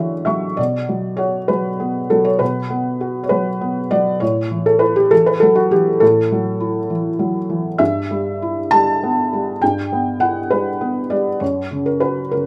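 A felt-muted upright piano opens this brief excerpt alone, its hushed, mellow tone sitting close and intimate, with the soft clatter of its action audible beneath the notes. The music is neoclassical minimalist piano in B minor, wistful and melancholic, moving in a rubato 6/8 at about 66 beats per minute counted in dotted quarters, and tuned slightly above standard pitch. The harmony drifts from an A6 color into B minor at 0.6 seconds, then passes through A5, Em/G and finally F# near 11.4 seconds, before the clip ends at 12.5 seconds. The piano spans from low F#2 up to C#6, its felted sound placed up front in a small, reverberant room. The rough home-demo mix gives the whole fragment a private, unpolished feel, as if overheard from a longer piece.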